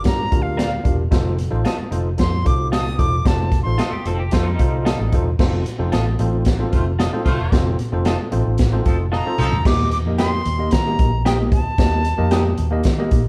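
Urgent and passionate, this uptempo 1960s-style soul cut at 113 BPM opens on a Gm7 to F7 vamp, with an airy silver concert flute carrying the melody in a solo until 5.4 seconds and returning at 9.1 seconds. A worn, slightly out-of-tune tine electric piano with light overdrive, a dark, round, foam-muted fingered bass and picked guitar stabs through a small, slightly broken-up amp support it, while a twangy fingered guitar riff with tremolo surfaces briefly and a tight, distant horn section adds a second line from 6.7 seconds. Up front sits a punchy, rolled-off big-band drum kit, which plays a fill before the move to Eb at 9.7 seconds, all heard as a band live in one room with light reverb and a lo-fi cassette character.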